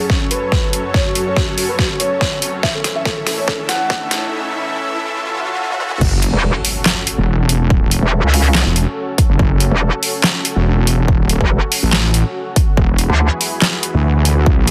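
Dense, heavily limited and lightly reverberant, this heavy, chaotic half-time wobble dubstep excerpt opens with a soft, felt-muted upright piano melody through tape echo over a lush, sidechain-pumped supersaw pad, an overdriven dubstep drum kit with a deep snare and bright hats, and a punchy electronic kick drum, while background risers and a swell build to the drop at 6.0 s, where an impact lands and a saturated, detuned sawtooth wobble bass arrives up front, joined moments later by an aggressive, metallic FM wobble bass.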